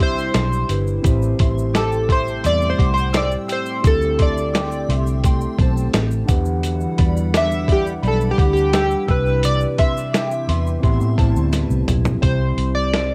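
A gritty, pitched-down boom bap drum kit sets an unhurried 86 BPM straight 4/4 groove beneath this hazy, lonely indie bedroom-pop excerpt in A dorian, where glossy, chorused retro synth keys carry the soloing melody over a round, foam-muted bass, a dark fingered electric guitar with warbly pitch drift, a clean tine electric piano, a very quiet hollow pad, a shimmering FM bell line, and a grainy egg shaker, all with a cassette-tinged home-recorded haze and a drum fill at 11.5 seconds.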